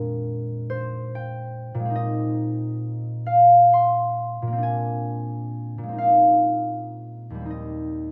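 Graceful and dreamy, this brief cut from a longer classical piece features a solo concert harp in a slow, rubato 6/8, moving at roughly 38-51 BPM in dotted quarters. The harp sounds warm, thumb-plucked and ringing, sitting up front and captured by close, detailed microphones, ranging from Eb2 to C6. Its lush harmonies drift from Bb13 through Abadd9/Bb and Bb9sus4 to settle on Eb6 at 7.5 seconds, all bathed in a moderate scoring-stage reverb.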